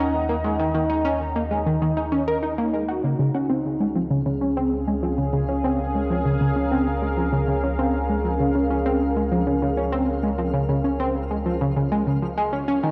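This excerpt of hypnotic, mysterious space music opens with three parts at once: a tight, nasal sequenced synth riff up front, a bright, resonant pad sustaining chords alongside it, and a round sub bass holding down the low end. The riff has a driving, detuned sawtooth edge with a plucky filter snap, carried by chorus and analog delay. The pad evolves slowly through filter swells with long releases and chorus, and the bass gains a touch of grit from tube saturation. At 3.0 seconds the harmony moves from Ebm to Db6, and at 3.8 seconds a sparkling granular texture with an octave-up shimmer fades in quietly in the background, bathed in its own reverb. The whole recording sits in a lush hall reverb and carries the warbling pitch drift of worn old cassette tape.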